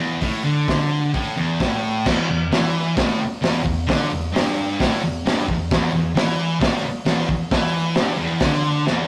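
A thick, bright fuzz guitar opens this rowdy, swaggering garage rock excerpt with a double-tracked, picked riff up front, joined at 0.2 seconds by a crunchy breakbeat drum kit of dark cymbals, medium-tuned snare and punchy kick, gritty and rolled-off on top, in a rough rehearsal-room sound with tube saturation and moderate stone room reverb, ending on a drum fill at 8.9 seconds.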